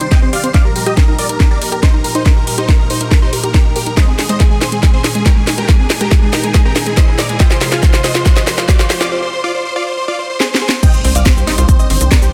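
Euphoric and driving, this uplifting trance excerpt in C minor moves at 140 BPM in a straight 4/4, cut from a longer piece. A huge, bright supersaw lead carries the melody from the start, its detuned sawtooth unison roughened by vintage 12-bit sampler grit and trailed by dub echo, while a silky, string-like analog pad holds sustained chords through ensemble chorus and vibrato, and a lush unison pluck spins arpeggios in the background under a filter sweep. A punchy, up-front electronic kick and a house kit with cracking snare and metallic hats drive the build-up with drum fills, and the lead, pad and pluck all pump against the sidechain over chords moving from Cmadd9 through Ebadd9, Absus2 and Fm7. After a very quiet electronic riser enters at 2.8 seconds and a brief break, the drop lands at 10.8 seconds with an impact, returning to Cmadd9 as a grainy, close and dry cabasa and a tight sawtooth sequencer bass join. 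The sound is dense and heavily limited, with light reverb.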